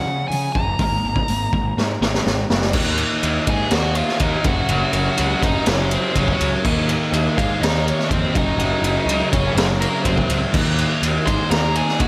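A raw garage drum kit sits up front in this brooding, cathartic stretch of quiet-loud alternative rock, its high-tuned snare and boomy kick sounding gritty and saturated with a rolled-off top, as if played in a small room. A twangy twelve-string electric guitar opens with bright, clean, compressed arpeggios over Db and Absus2. The nasal lead guitar, overdriven through a parked wah with slapback echo and digital delay, carries the melody from the very start, while a growly, fuzz-soaked picked bass holds the low end. A drum fill from 1.8 s leads into the loud section at 2.7 s, where the twelve-string drops out and two distorted, picked fuzz guitars take up a riff in the background, one thick and bright, the other warmer and compressed. The harmony shifts there, moving from Ebm into alternating Gb5 and Eb5 power chords. A lush hall reverb gives the whole mix a big arena sound, and the passage is cut from a longer piece.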